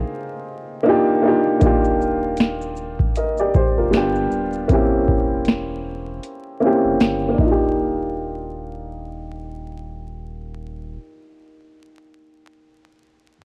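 Nostalgic and cosy, this lo-fi hip hop excerpt moves at a relaxed 78 BPM in Eb major with a swung sixteenth-note feel, opening on a brief break where a woody, vintage upright piano and a thick, deep triangle-toned sub bass with transformer saturation carry jazzy chords like Bb7sus4 and Ebmaj9. At 1.6 seconds a booming analog drum machine arrives up front with a dry, deep kick, crisp snare, metallic hats and shaker, while a filter sweep colours the piano through 7.8 seconds, just after the drums stop at 7.6 seconds. Cassette tape softening, a low-pass filter on the piano, light reverb and vinyl crackle give the whole piece a homespun, tape-worn glow.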